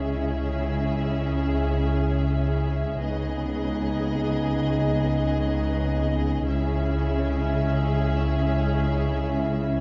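Relentless and dramatic, this epic orchestral film score fragment, cut from a longer piece, unfolds in free time as a build-up in which a lush violin section carries the melody over a distant second violin line, smooth-topped violas, sustained French horn chords and a bass of background cellos and up-front, woody double basses, the strings all bowed with vibrato and everything set in a moderate concert-hall reverb with a dark, warm production.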